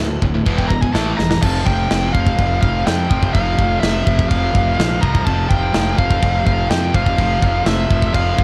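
An epic, aggressive heavy metal passage cut from a longer piece, driven in a straight 4/4 with a dark, warm production that leaves the sound dry. A bright, picked distorted guitar carries the riff throughout, joined at first by a high-gain rhythm guitar sitting in the background that drops out at 1.4 seconds. Underneath, a fuzz-laden fingered electric bass growls up front with overdrive, while a tight acoustic drum kit with a medium-tuned snare, tight kick and crashing cymbals enters almost immediately and plays a fill at 1.2 seconds. A high-gain lead guitar with distortion and delay comes in at 0.6 seconds, soaring in a high register as the opening solo gives way to the longer second section. The chords move from E5 through A5 to F5, giving the riffing a heavy, aggressive cast.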